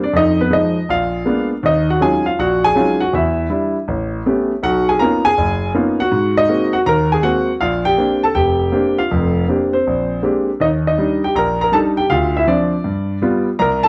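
Solo jazz piano swings along at 160 BPM in 4/4, its eighth notes carrying a relaxed lilt that gives this short cut from a longer piece a swinging, warm mood. A single grand piano carries everything, its tone smooth and vintage and placed up front, spanning from deep F1 in the bass to A#5 at the top. The harmony is rich and restless, moving through altered and extended chords such as Fm7b5, Bb7b9, Ebm11 and Bmaj9#11 before settling onto Bb69 and Bb13. Around 10.6 seconds the piece turns to a new passage built on Ebmaj7, Dm9 and G7, and it runs to 13.9 seconds. A moderate reverb from a large studio surrounds the piano, lending it a sense of space.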